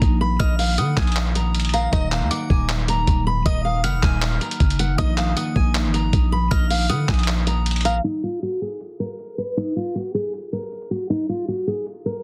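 Hip hop and trap cut from a longer piece, melancholic and eerie at 157 BPM in a half-time feel, with a dark fingerpicked steel-string acoustic guitar carrying the melody through tape echo, finger squeaks audible, over warbling, nostalgic synth keys with chorus and phaser, a growling, buzzy 808-style bass, muffled sampler-style drums of thumpy kick, hi-hat and handclaps, and a glassy, crystalline synth bell line entering at 0.4 seconds, before the keys, bass and bell drop out around 8 seconds and a filter sweep runs over the guitar and drums in a dense, heavily limited, dry mix.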